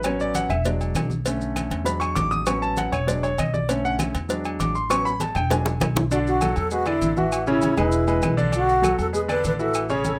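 A rough home-demo mix with a small-room reverb frames this sunny, danceable salsa at 198 BPM, where an up-front, clear grand piano with audible action noise solos over a cycling A6–E7–Bm7–E7 progression, backed by thumpy pizzicato upright bass, soft-handed low-tuned congas, tight cowbell and bongos that drop out at 6.0 seconds during a drum fill, ringing agogo bells and timbales, grainy maracas and woody claves, as a distant, airy alto flute with expressive vibrato takes up the melody from 6.0 seconds.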